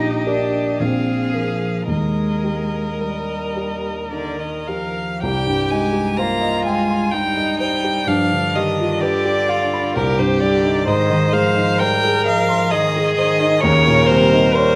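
Tender and lyrical, this excerpt from a slow romantic classical movement for piano quartet unfolds in a rubato triple metre: an up-front, focused solo violin sings the bowed melody with vibrato and a smooth top, while a second violin of matching character and a rich, even, distant-sounding cello shape the supporting lines, and a warm grand piano carries the accompaniment close at hand, the ensemble set in a moderate recital-hall reverb with a new passage arriving at 5.2 seconds.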